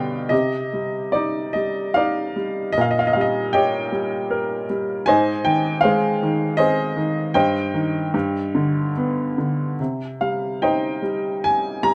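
A brief upright piano fill opens the recording before the lyrical solo line settles in at 0.3 seconds, in an unhurried triple metre with a flexible rubato feel. This wistful, melancholic classical fragment, drawn from a longer piece, has a single upright piano spanning G2 to Bb5. It sounds woody and intimate, placed up front with the clatter of its action clearly audible. The harmony passes from Cmadd9 through Eb7/Bb and Ab, then Cm/G and G before coming to rest on Cm near 9.8 seconds. Close, detailed miking and a light reverb keep the instrument natural and present through to the close at 11.9 seconds.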